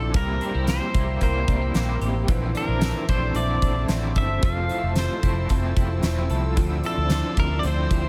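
Dream pop at 112 BPM in F major, this dreamy, floating excerpt from a longer piece has a pedal steel guitar carrying the melody with delay, played with fingerpicks and volume swells, over a bright, overdriven guitar with tremolo and analog chorus and a clean, picked electric guitar tracing arpeggios through ensemble chorus and delay. A lush, warbling sawtooth pad with slow attack and long release sits in the background, while a dark, round, foam-muted fingered bass stands up front beside a huge, polished arena kit with a fat snare, punchy kick, hi-hat and tambourine. The harmony moves from C7 to Bbmaj9#11, Fmaj7 and Dm9, all bathed in studio reverb.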